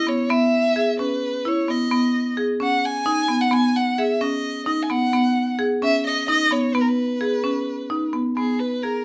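Set in a wet studio reverb with a short tail, this nine-second excerpt from a longer contemporary instrumental piece has a hypnotic, pensive mood, moving in an uneven 7/8 at 260 BPM counted in eighths with a straight feel. A marimba played with hard mallets sits up front, its rosewood bars giving a woody, bright and percussive tone as it spins arpeggios between B3 and G#4 from 0.1 to 8.9 seconds. Above it, a single bowed violin carries the melody between G#4 and G#5, its voice soft in attack, with vibrato and portamento lending an expressive, singing quality. The harmony rests on C#m7 before moving to G#m at 1.9 seconds, then shifts to a rootless C#7 with the third omitted at 8.4 seconds. The two instruments share the foreground, the mallet pattern's crisp repetition setting off the violin's tender line.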